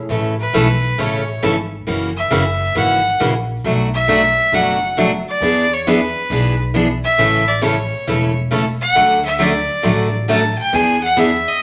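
Western swing country in A major at 135 BPM with a down-home, swinging 4/4 lilt: a clear, intense fiddle with light vibrato carries a bowed solo up front from 0.4 seconds, over a bright, full-bodied picked acoustic guitar and a woody pizzicato upright bass, all set in a wet studio reverb as the chords move from A through F#7, Bm7 and E7, back to A, then on to Dmaj7 and E7.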